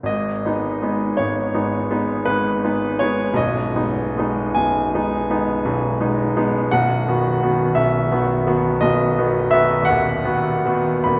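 Romantic classical nocturne for solo piano in G# minor, wistful and melancholic, moving slowly at 55 BPM in a rubato 9/8 with uneven beats, its clear, natural grand piano sitting up front and ranging from B0 to B5 through a long cathedral reverb, as the harmony drifts from G#m toward B and B/D# across this 11.2-second fragment of a longer piece.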